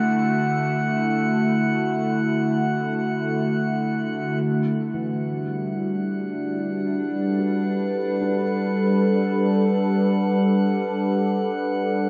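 Bathed in a huge, dark reverb with an 8.1-second tail, this serene ambient excerpt floats in free time, led by an up-front wavetable pad whose detuned, morphing chords sustain from D and shift to G6 at 4.4 seconds as a filter sweep moves through it. A glassy harmonics texture hovers high above on F#5 with drifting overtones, fading in from 4.4 seconds onward. At 4.9 seconds a felt-muted upright piano enters very quietly with boxy, intimate arpeggios, its action noise audible beneath the haze.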